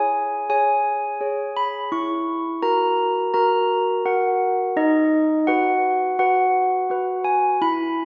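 A C#5 chord rings out from solo handbells, clear and up front with medium clappers, opening this festive, serene classical excerpt in a steady 4/4 that moves through an F#7/E chord at 1.9 seconds to a B/D# at 4.8 seconds, the bells spanning D#4 to C#6 and blooming into a lush concert hall reverb.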